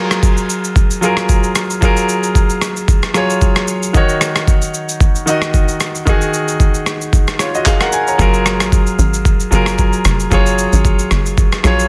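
Soulful and deep, this amapiano excerpt moves at 113 BPM in 4/4 with a light 16th-note swing, built on clear, polished concert grand piano chords with short sustain that sit up front from the start. A gritty, overdriven sampler-style drum kit with a thumpy kick, handclaps, rim click and shaker carries the groove, re-recorded in a small room for a compressed, boom bap character. At 8.2 seconds a tight, punchy log drum bass enters with a fast attack and mellow decay, all set in a dry, dense and heavily limited modern mix.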